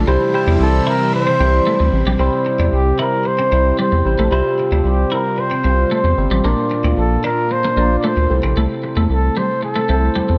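A lush hall reverb gives this glossy, romantic pop excerpt a polished sheen, with a barky tine electric piano carrying the accompaniment through a phaser and a round analog bass sitting deep and up front. A swirling string machine holds sustained chords only until 2.2 seconds, while a twangy twelve-string electric guitar plays a riff coloured by ensemble chorus and tape echo. From 0.6 seconds a breathy, intimate flugelhorn with vibrato carries the melody, trailed by its own tape echo, over chords moving from C to Fsus2/C, Bb and Am.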